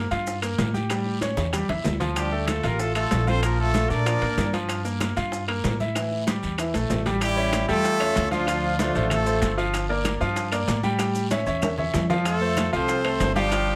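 Salsa at a driving 190 BPM in 4/4, this danceable excerpt is cut from a longer piece and moves through minor-key changes such as Gm7, A7, Dm and Bbmaj7 before landing on F. A bright, polished concert grand piano with deep bass and a present tone sits up front as the accompaniment throughout, joined by a thumpy, dark pizzicato upright bass with steel strings. The brilliant horn section carries the melody in short bursts at 2.2, 7.2 and 12.3 seconds, played as a close-miked ensemble with light vibrato and octave doubling. Beneath them runs a full percussion bed: very quiet round, low-tuned bongos played with soft hands and damped congas struck with hard hands, plus ringing metal-shell timbales, woody claves, a raspy guiro and grainy maracas in the background. Drum fills lead into each horn entry, and a moderate studio reverb surrounds the band.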